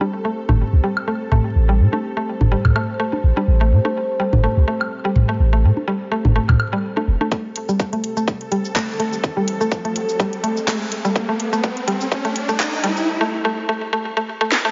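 This excerpt of cool, sparse minimal techno in A minor at 125 BPM opens on an Am7 chord, with a woody, FM-flavoured mallet pluck riff pumping through chorus and delay over tape-warm electronic bongos, toms and woodblock, a moody, warbling sawtooth pad and a swarming, wave-folded granular drone in the background, while a punchy sine sub bass with a pitch-drop attack enters at 0.5 seconds. At 7.3 seconds the hand percussion gives way to a tight, up-front electronic kick and a layered garage kit of cracking snare, metallic hats, cabasa and handclaps, starting a build-up that a riser joins at 9.3 seconds. Filter sweeps on the pluck, a lush hall reverb and a drum fill at 14.5 seconds round out the passage.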